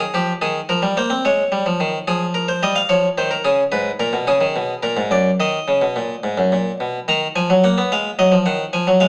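A solo harpsichord, plucked and bright with a single set of strings in the Flemish style, sits up front in this contemplative, serious baroque-style two-part invention in 3/4. The short excerpt, cut from a longer piece, moves through shifting harmonies that settle onto an Eb minor chord at 7.1 seconds as a new section begins. A large studio reverb gives the instrument a wet, spacious ring around its mid-forward tone.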